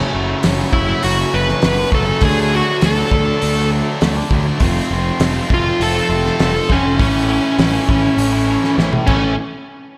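A lush hall reverb and a big arena sound frame this short, anthemic slice of quiet-loud alternative rock, whose bittersweet mood rides a straight 4/4 feel over a progression of F#m, D, F and A. Two double-tracked guitars open together: a biting overdriven guitar plays a riff with a slapback echo, while a bright fuzz guitar sits in the background, distorted and echoed in the same way. A fuzz picked electric bass, direct and amped with overdrive, anchors the low end from the start. A loose indie drum kit joins at 0.4 seconds, its fat snare, punchy kick and dark cymbals set in a pumping studio room, and it closes with a fill beginning at 8.8 seconds. Up front from 0.7 seconds, a dark, smooth lead guitar carries the melody, colored by overdrive, slapback echo and tape echo.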